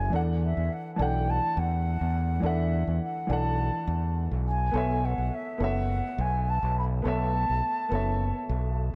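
The recording sits in light reverb and studio ambience, a short cut from a longer sunset chillout piece in straight 4/4 at 104 BPM, tuned to A4 = 442 Hz. A growling fingered electric bass, overdriven and amped, sits up front, ranging from F#1 to E2 beneath the other parts. A dark baby grand piano supplies worn, boxy accompaniment between E3 and F#5, with its action noise audible. Above it, a wooden flute carries the melody between E5 and B5. The flute sounds pure, with a soft attack and vibrato, and is set distant and trailed by tape echo. The harmony moves from E9sus4 to B9sus4 at 4.5 seconds, and the three parts play together for the full nine seconds, giving the passage a warm, wistful glow.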